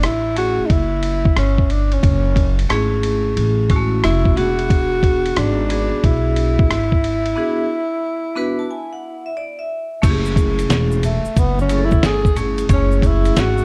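Cool and nocturnal, this jazz-hop excerpt in swung 4/4 sets a mellow tenor saxophone with subtone, vibrato, scooped notes and analog delay over a woody pizzicato upright bass on gut strings and a muffled, pitched-down sampler-style drum kit with a thumpy kick and fat snare, all three up front. A vibraphone played with hard mallets enters at 0.4 s, metallic and ringing with slow motor vibrato in a boxy small room, and plays a fill during the break from 8.0 s. At 10.0 s the saxophone moves into a solo as bright, saturated maracas and congas join in the background of the dark production.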